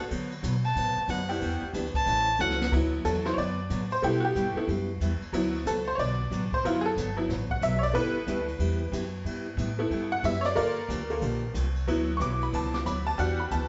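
A jangly, metallic tack piano opens this playful, down-home western swing excerpt in D major at 184 BPM with a swung feel, and a nasal, smooth fiddle carries a short melody with light vibrato from 0.6 to 2.7 seconds before a brushed drum fill hands off to a honky-tonk piano solo that runs to the end. Underneath, a woody, thumpy pizzicato upright bass sits up front, a full-bodied jumbo acoustic guitar adds picked accompaniment with audible finger squeak, and a distant, roomy brush kit with dark cymbals, a high-tuned snare and a boomy kick keeps time. The band sounds like it is playing live together in one room, with a wet studio reverb and a rolled-off top end.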